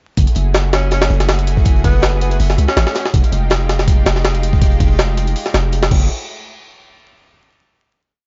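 Drum and bass with a jungle edge, this short, complete piece runs at 162 BPM with a light swing on the sixteenths and a raw, nostalgic mood. Up front, a heavily chopped, sampler-style jungle kit hits with a thumpy kick, high-tuned snare, hi-hat and crash, its pitched-up, compressed sound carrying a tape-warm grit and the air of a large room. Beneath it, a very quiet looped acoustic breakbeat of hi-hat and snare adds a dark, saturated layer with a rolled-off top. A deep, sine-like 808-style bass holds long dub-style notes, while a lush, detuned sawtooth pad with chorus sustains bright, airy chords moving from F#m9 to Fm9 and back. From 0.7 to 3.1 seconds a clear, distant tenor saxophone plays short jazz-style phrases with vibrato and dub echo, and the drop gives way to a final hit at 6.1 seconds. The whole recording sounds dry and gritty, with vinyl crackle and a dulled top end.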